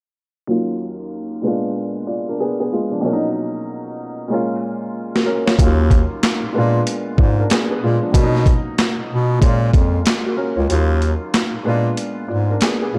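A swung 94 BPM boom-bap groove in Eb minor sets a gritty, dark mood, as a woody, slightly detuned upright piano with audible action noise and a cassette-tape filter sweep plays from 0.5 seconds, a thumpy, compressed sampler-style kit with a high-tuned snare, handclaps and hi-hat enters at 5.2 seconds with a short drum fill, and a clear, close-miked bass clarinet joins at 5.6 seconds beneath chords like Ebm7, Bb7b9 and Bmaj7 before a break at 10.7 seconds in this cut from a longer piece.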